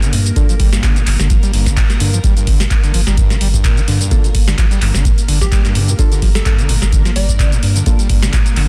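Acid house with a playful, trippy mood, this short cut from a longer track rides a swung groove in 4/4 over a single Gm7 chord. A deep electronic kick sits up front, while a booming analog drum machine adds a crisp snare, handclaps, metallic hats and shaker, all re-recorded in a large room. A squelchy, gritty overdriven acid bass drives the riff with resonant filter sweeps and subtle chorus, under a thick, saturated sub bass that pumps against the kick. Lush vintage string-machine chords hold in the background, colored by phaser and ensemble chorus and also pumping, and dark, nasal chord stabs with tape echo flicker in at 0.4 seconds before returning from 4.1 seconds. A punchy, detuned unison lead with vibrato and tape echo sings a catchy line from 5.4 to 7.5 seconds, in a dry, dense and heavily limited modern mix.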